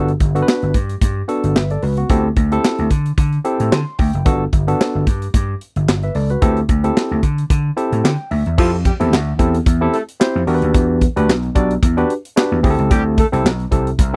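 A dry, close recording in a 1970s studio style carries this smooth, danceable early-eighties boogie funk clip in G major at 111 BPM, with a lightly swung sixteenth feel. A warm vintage slap bass and an acoustic drum kit with bright cymbals, handclaps and a punchy kick sit up front beneath a barky, overdriven tine electric piano that comps through Gmaj7 and D7sus4 and adds short fills at 3.4 and 7.5 seconds. At 8.6 seconds the harmony shifts to Fmaj7, Em7 and D9sus4 as a warm, smooth-topped horn section enters with a second line.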